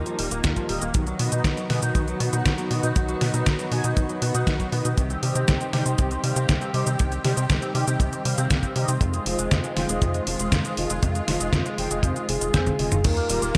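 An overdriven, detuned 8-bit drum machine sits up front in this romantic, danceable italo disco excerpt at 119 BPM in straight 4/4, its sampler-style snare, hi-hat, cabasa, crash and toms sounding as if re-recorded in a small room. A dry, tight acoustic kick joins at 0.4 seconds, and a punchy sawtooth-and-square sequencer bass drives underneath with a quick filter pluck. The harmony moves from Ebadd9 through B and Cm to Fm7 before returning to Ebadd9. Over it, a clean, twangy electric guitar with an envelope filter picks arpeggios through chorus, delay and shimmer reverb. Round, detuned synth brass adds stabs with an evolving filter sweep, while a veiled, con sordino string section holds bowed chords with vibrato. At 12.3 seconds a soft, octave-layered synth lead enters with a brief, full melody, and a drum fill follows at 12.5 seconds, all within bright 1980s-style digital production and a moderate plate reverb.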